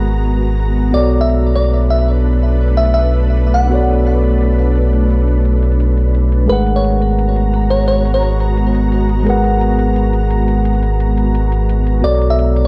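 The sub bass with octave stands out most, deep and full with a sine-like roundness, sitting up front and holding low between G#1 and B1 at 173 BPM in a straight 4/4 liquid drum and bass groove. Above it, a mellow tine electric piano supplies the accompaniment with vintage 12-bit sampler grit and delay, while an ethereal, airy pad of detuned saw and triangle layers sustains chords through ensemble chorus and built-in reverb. A bell-like FM electric piano carries the melody in short phrases, sparkling and decaying with chorus and delay, entering at 0.9 seconds and returning at 6.5 and 12.0 seconds. A very quiet, overdriven electronic hi-hat ticks brightly beneath it all. The harmony shifts between G#m9 and Bm9 in G# minor, and light digital ambience gives this dreamy, soulful cut from a longer piece a gentle sense of space.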